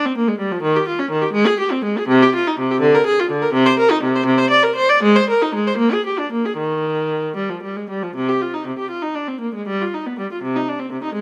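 Classical, baroque-style suite movement for unaccompanied viola, a flowing, serene excerpt in 6/8 that moves with a rubato lilt at roughly 74-87 BPM in dotted quarters, starting in Eb major and turning to C minor at 8.2 s. The single bowed viola stays up front for the full 11.2 s, ranging from C3 to D5 with a warm, expressive tone shaped by vibrato and portamento. Close, detailed microphones catch its nuances inside a light reverb.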